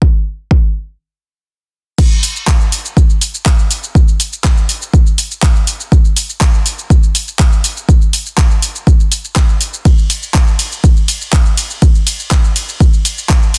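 A dreamy, emotional house groove at 122 BPM in a straight 4/4, cut from a longer piece. A deep, layered electronic kick drum opens on its own and sits up front. After a brief stop at 1.0 seconds, the drop lands at 2.0 seconds, where a deep house drum kit of crash, handclaps, hi-hat, ride and shaker joins at a lower level. Both drum parts carry a tape-warm, small-room character, with little reverb in a dense, heavily limited modern master.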